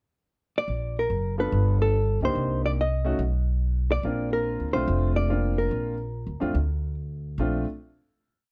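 Relaxed and sophisticated, this short small-group swing and bop jazz piece opens with a pickup bar in which a dark, clean hollow-body electric guitar begins a compressed, motif-based melody at 0.6 seconds. It is joined by a woody, pizzicato upright bass in a two-feel and, from 1.4 seconds, by a clear vintage upright piano comping with syncopated rootless voicings and long sustain, all up front in light reverb, before the piece closes on a final chord.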